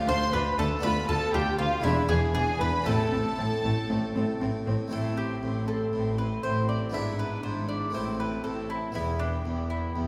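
A picked mandolin, round and up front, opens this brilliant, lively baroque-style concerto movement in 4/4, joined at once by a harpsichord and a violin section playing a second line in the background. The mandolin's double strings give the solo melody an acoustic, warm presence. The harpsichord supplies the plucked accompaniment, close-miked and dry, with a full French-style sound from two sets of strings. From 0.1 seconds a studio violin section shares the melody higher up, sitting close with gut-string tone and light vibrato, while a smooth-topped viola section fills in behind. Underneath, a nasal, reedy cello section and a rich double bass section anchor the bass line with period-style bowing, as the harmony moves from Dm through E7 to Am and a new section begins at 4.9 seconds. The passage, cut from a longer piece, sits in a wet recital-hall reverb with the spacious ring of a church or concert hall.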